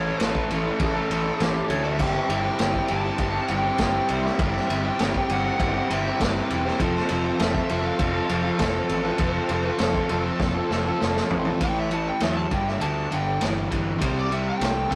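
Driving and sunny, this classic rock passage, cut from a longer piece, moves in a straight four-four feel with a rough rehearsal-room sound, tube saturation and a wet studio reverb. Two overdriven, compressed electric guitars sit in the background playing the riff, one with a warm tone and the other bright. Up front, a fuzz-laden picked electric bass growls beneath them, while a vintage acoustic drum kit with a punchy kick, dark cymbals and a rolled-off top comes in at 0.2 seconds. A warm lead guitar, pushed through a small cranked amp, carries the melody in a higher register over chords that move from A through C/G to F. After a drum fill from 10.4 seconds, the lead guitar breaks into a solo at 11.6 seconds as the harmony shifts to power chords.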